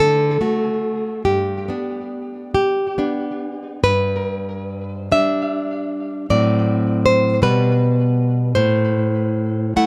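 A fingerpicked nylon-string guitar plays alone and up front through this sunny, tender excerpt of a romantic classical piece in G major, moving in a rubato 6/8 at roughly 45-54 BPM by the dotted quarter, spanning G2 to F#5 with a warm acoustic tone touched by tape echo, shifting into a new section at 3.8 s as the harmony travels from D and G through D7/A and G/B to Am, all captured by close, detailed microphones in light reverb.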